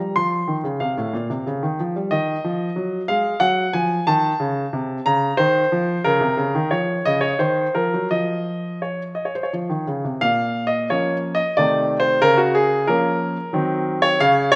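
A clear, polished baby grand piano plays alone and up front through this short cut from a restless, elegant classical-period sonatina in B-flat minor, moving in 3/4 at 91 BPM with a straight feel across a range from A2 to C6. The harmony passes through F7, D-flat add9 and E-flat minor add9 before a brief chordless moment at 8.1 seconds, and a new section at 10.2 seconds turns to B-flat minor and diminished chords. A moderate recital hall reverb gives the present piano tone a sense of space.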